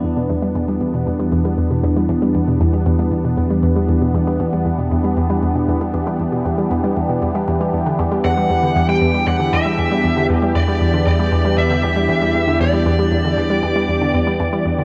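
Mysterious and hypnotic, this excerpt of ambient, sequencer-driven space music moves at 117 BPM in E minor, resting on a single Em7 chord throughout. A lush, detuned sawtooth pad holds sustained chords up front with chorus and phaser, while a hollow, bouncy square-wave pluck repeats a riff through chorus, phaser and analog delay, and a warbling, vintage analog drone sits in the background as the bass. At 8.2 seconds a dark, overdriven electric lead guitar enters up front with a melody in a high register, colored by analog delay, and a moderate plate reverb gives the whole mix a spacious tail.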